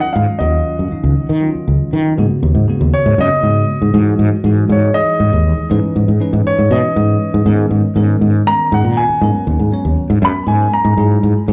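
A polished grand piano carrying the melody, with slapback and tape echo, and a bright, bell-like tine electric piano open this intense, slick electric jazz fusion excerpt at 239 BPM in a straight 7/8 in G# minor, joined at 0.2 seconds by a growly, up-front fretless electric bass, before the grand piano takes a solo from 2.2 seconds over G#m11, Emaj9/G# and C#m9/G# chords, all heard as a live club gig through the venue's PA with small-room reverb.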